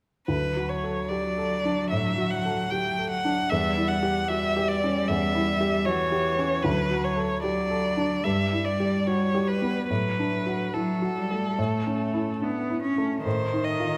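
Close, detailed microphones and a moderate scoring-stage reverb frame this lyrical classical piano trio, cut from a longer romantic slow movement: from 0.3 s to 14.0 s a rich, focused violin with vibrato sings the melody up front, a clear, intense cello with a smooth top and vibrato carries a second line, and a warm, present baby grand piano with short sustain accompanies up front, all in rubato.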